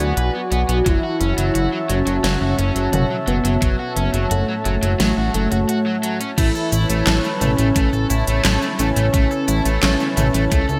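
This driving, nocturnal synthwave excerpt at 87 BPM opens on B minor with a thick, dark detuned unison lead carrying the melody over shimmering chorused pulse-width pad chords that pump against the sidechain. A fat analog bass sits up front, a warm overdriven electric guitar riff runs through lush chorus and digital delay, and a pop drum kit with a fat gated snare, crisp hats, handclaps, cabasa, toms and crash is joined at 0.9 s by a knocking layered electronic kick as the harmony moves to F#m7. After a brief break at 5.7 s, the music settles onto Aadd9 at 6.4 s, all wrapped in bright 1980s-style digital production with light reverb.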